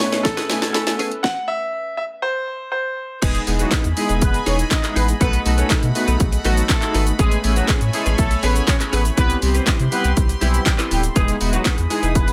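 A punchy kick and cracking snare drive a straight 121 BPM house beat with claps, hi-hats, shaker and crash in this upbeat, carefree dance-pop excerpt in E major, opening with a drum fill, a filter sweep and a chordless stop from 1.2 s that build toward a drop at 3.2 s. A clear, polished baby grand piano carries the melody until the drop, where a punchy, vibrato-tinged horn section takes over, doubled in octaves and set distant in the room, as a deep, round sine sub bass pumps underneath. Throughout, a glossy, retro chorused polysynth pulses with tremolo, a bright, evolving sawtooth pad sustains detuned chords, a clean direct-recorded guitar riff sits in the background, and a very quiet, lush unison pluck flickers arpeggios in the opening second, all bathed in digital ambience.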